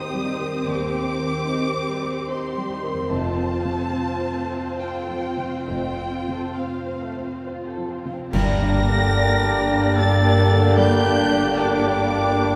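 A lush violin section carries the melody high above the orchestra, its vibrato expressive, while a darker second violin line sits distant in the background. This excerpt from a longer cinematic film score moves slowly in 3/4 at 67-76 BPM with a rubato feel, in G minor, and the mood is moving and sorrowful. Beneath, smooth violas and an intimate grand piano, its action noise audible, fill out the harmony over Cm/Eb and F chords, while a very quiet fingerpicked harp rings with arpeggios and bowed double basses and very quiet cellos take the bass from 0.7 seconds. A cymbal swell, bright clash cymbals and concert bass drum, heard close and dry, arrive at 5.7 seconds, leading to a band accent at 8.3 seconds as the harmony turns to Gm and soft-mallet timpani sound a round G. There an airy, hollow flute, a punchy oboe and a roomy clarinet join as second lines, with a soft-attack French horn section sustaining chords. 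The orchestra sits in a reverberant scoring stage, heard from further back in the room.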